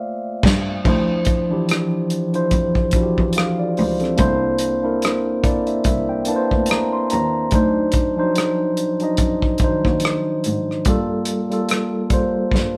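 A mellow tine electric piano sits up front in this smooth, late-night neo-soul R&B cut in D minor, playing clean chords through its built-in speakers over a lightly swung 72 BPM groove, and stepping out with a fill from 5.0 to 7.5 seconds. A soul drum kit with a tight kick, medium-tuned snare, rim clicks, hi-hat and dark cymbals sits close and rolled-off on top, while a single bowed cello carries the bass line in the background with a nasal, boxy vibrato. After a band accent at the start, the chords move through Gm9, Dm9, C9 and D7b9, with the band playing live together in one room with light reverb, and a drum fill arrives at 12.5 seconds.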